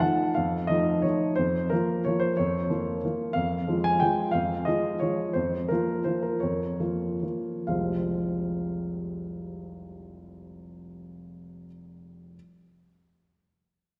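Classical piano waltz in 3/4 and F minor, nostalgic and elegant, with a rubato feel that ranges from 117 to 193 BPM. A solo baby grand piano, polished and up front, spans F1 to Ab5 over a harmony that moves from F7 through Bbm/F back to Fm, slowing down between 4.8 and 7.7 seconds before a new section begins. A wet concert hall reverb with a 2.1-second decay surrounds the dark, warm production of this fragment cut from a longer piece.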